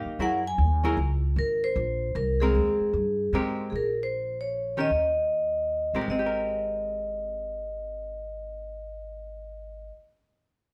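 A moderate studio reverb gives this short cut from a longer piece the feel of a trio playing live together in one large room. It is small-group jazz in a swing and bop vein, a playful, relaxed piece in 3/4 at 153 BPM, swung on the eighths and centred in Ab major. Up front, the vibraphone carries the melody with medium hard mallets and its motor off, giving a dark, smooth, ringing metallic tone. Beside it, a clean, picked hollow-body archtop guitar, miked through an amplifier, supplies shadowy accompaniment. The upright bass, played pizzicato on steel strings, anchors the low end with a woody, thumpy sound. The harmony moves from Gb9 to Abmaj9, shifts to Bbm at 3.7 seconds and Eb5 at 4.9 seconds, and returns to Abmaj9 at 6.1 seconds, with all three players continuing to about 10 seconds.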